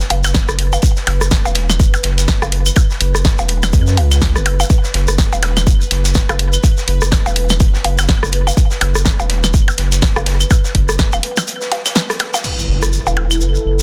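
Hypnotic and cool, this minimal techno excerpt runs at 124 BPM in F# minor, with a 58% swing on the sixteenths giving its 4/4 groove a loose shuffle. A deep, saturated sub bass with a fast attack sits up front, pumping against the sidechain, while a punchy electronic kick and a layered house drum kit with a punchy snare, bright hats and crash cymbal drive the beat. Behind them, a dark, gritty breakbeat kit with a high-tuned snare and rolled-off top adds texture, joined by a grainy, compressed shekere and overdriven electronic blips, claves and rim click coloured with tape echo. A mellow, detuned triangle texture pulses on a sustained B4 in the background, holding over an F#5 chord. After a break from 11.5 seconds, an impact lands at 12.4 seconds as an airy, breathy pad with a nasal edge enters over F#m7, all held in a dense, heavily limited master.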